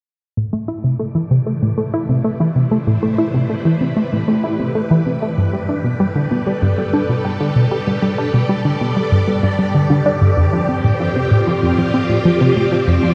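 A tight, nasal sequenced synth sits up front, driving a sawtooth-and-pulse-wave riff with a detuned, plucked edge, dressed in chorus, analog delay and shimmer reverb. This ambient, sequencer-driven space music moves at 96 BPM in a straight 4/4 and feels expansive and luminous. Behind it, a swirling, vintage string machine fades in from 0.4 seconds with bright, sustained chords, its slow attack colored by ensemble chorus, phaser and shimmer reverb. From 1.1 seconds, an airy, breathy wind-like noise texture holds a single high tone in the background, with a long release and its own reverb plus shimmer. The harmony moves from Am7 to Gadd9 at 5.4 seconds and Fsus2 at 10.4 seconds. The whole passage, cut from a longer piece, is bathed in a wet cathedral reverb that places it in a vast, echoing space, with the soft grain of cassette tape.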